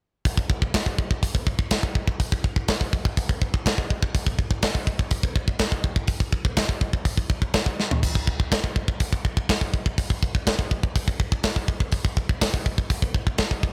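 A tight acoustic metal drum kit carries this short, relentless cut from a longer piece, its hi-hat, snare, kick, splash cymbal and toms set up front with bright cymbals, a medium-tuned snare and a tight kick. The straight 4/4 groove feels epic, with a drum fill landing at 7.8 seconds. The kit has a big-room, mid-forward character, though the overall sound stays dry with little reverb.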